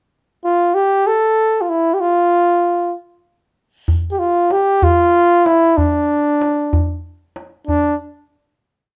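Persian modal ensemble piece in D avaz esfahan, moving at a slow 64 BPM in a straight 6/8, with a melancholic, longing mood. A mellow flugelhorn carries an ornamented modal melody in classical style from 0.4 seconds, sitting up front between D4 and A4, and a tight tombak with soft hands joins at 3.9 seconds, playing a low and high stroke pattern in a small-room sound. A moderate studio reverb surrounds the pair before a final note held from 7.7 seconds.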